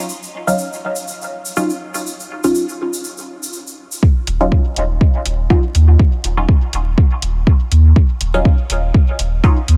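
Dub techno in Eb minor at 122 BPM with a lightly swung 4/4 feel, this deep, hazy excerpt opens on a grainy, distant egg shaker in a large room and a muted, nasal sawtooth chord stab sitting on an Ebm9, its filter pluck and moving notch colored by phaser, sidechain pumping and dub echo. At 4.0 seconds the shaker stops and an up-front, tape-warm electronic kick arrives, joined at 4.3 seconds by a round sine sub bass that pumps with the sidechain and by metallic, low-pass-filtered electronic hi-hats. Vinyl crackle hangs over the whole recording as a digital ambience.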